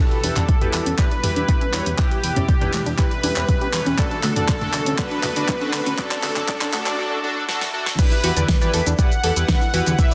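Progressive house at 120 BPM in a straight 4/4, hopeful and expansive, this excerpt builds over an Em to D progression for eight seconds: a smooth supersaw melody with dub echo, punchy detuned unison pluck arpeggios under a filter sweep, and glossy chorused polysynth stabs ride over a fat, sidechain-pumped analog bass, while a shimmering, ethereal pad holds chords until 7.0 s and a very quiet riser and swell run beneath. A tape-touched deep house kit with fat soft-clipped snare, handclaps, shaker, hi-hat and crash adds drum fills, electronic toms and congas sit in the background, and a deep, layered kick sits up front. At 8.0 s the drop returns to Em, all in a lush hall reverb under a dense, heavily limited modern master.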